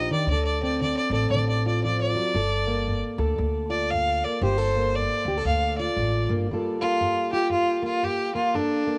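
Swung eighth notes in 4/4 give this short fragment of acoustic country blues a loping, unhurried gait, and the mood is smoky and brooding. A bowed fiddle carries the melody up front, its tone clear, focused and a little boxy, with light vibrato and a tape echo trailing behind it. It takes a solo through the opening 6.5 seconds. Beneath it, a plugged-in jumbo steel-string guitar is fingerpicked with a dark, full-bodied sound, finger squeaks audible, moving from Dm7 to Gm9. A pizzicato upright bass with steel strings adds a woody low end until 6.5 seconds, when the piece moves into a second section carried by the fiddle and guitar to the close at 9.0 seconds. Moderate room ambience and the grain of a home cassette recording lend the whole a close, intimate feel.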